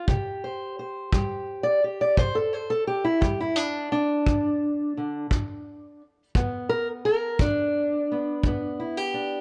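The recording has a light reverb and a rounded top end, with both parts sitting up front. This short cut from a longer piece is acoustic country blues in a laid-back yet rollicking mood, moving at a slow 57 BPM in a straight 12/8 in C major. A fingerpicked steel-string parlour guitar carries the melody from start to finish, its tone dark and boxy as it ranges from G2 up to D5. A tight acoustic kick drum, played with brushes and carrying a natural small-room sound, joins at 0.1 seconds and holds the beat until 8.6 seconds. The harmony rests on a C5 chord before shifting to G at 4.3 seconds, giving the brief passage an easygoing, front-porch feel.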